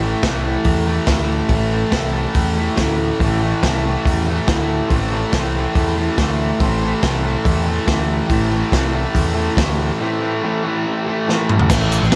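A fuzz-drenched, double-tracked guitar riff and a growling, overdriven picked bass open this gritty, menacing garage rock excerpt in A minor at 141 BPM, joined at 0.2 seconds by a crunchy, saturated breakbeat kit with dark cymbals and a tight kick up front, while a buzzy, very quiet combo organ holds sustained chords from 4.9 seconds and adds a fill before a drum fill lands on an A5 at 11.7 seconds, where a grainy tube shaker sits in the background of the light small-room ambience.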